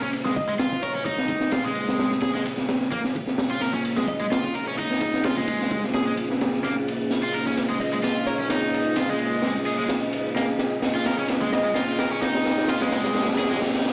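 Breakbeat with a raw, swaggering attitude, this cut from a longer piece stays in a single build-up over one minor-seventh chord, with a light swing on the sixteenths. A crunchy acoustic breakbeat kit sits up front, its gritty, saturated sound marked by a tight kick, a high-tuned snare, dark cymbals and a rolled-off top, with a drum fill running from 6.6 seconds to the end. A cranked electric stack guitar plays a bright, overdriven picked riff through a low-pass filter and delay, while a deep, moody analog pad holds detuned sawtooth chords with a sub octave, chorus and sidechain pumping. A crystalline wavetable pluck adds brief melodic flashes, first at 0.4 seconds, with ring modulation, a moving notch, a telephone-like tone, chorus and delay. Near the close, a very quiet electronic riser and reverse cymbal lift the tension, and the mix carries the reverberant character of a big sound system in a bare room.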